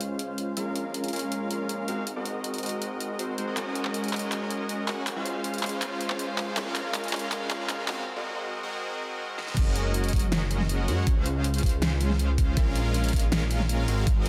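Future bass at 160 BPM in a half-time 4/4 feel, this playful, bright excerpt in Db major cycles through lush chords like Dbmaj7, Bbm7, Ab9 and Gb69, with a fat, bold polysynth riff carrying tape echo and sidechain pumping over a thick, detuned, chorused saw bass. A dubstep drum kit with a huge snare, bright hats, handclaps and crash, overdriven and up front, drives a build-up with a filter sweep and drum fills from 3.6 seconds, then a brief break at 8.1 seconds. The drop lands at 9.6 seconds as a knocking, overdriven electronic kick enters, all set in a lush hall reverb and a dense, heavily limited modern master.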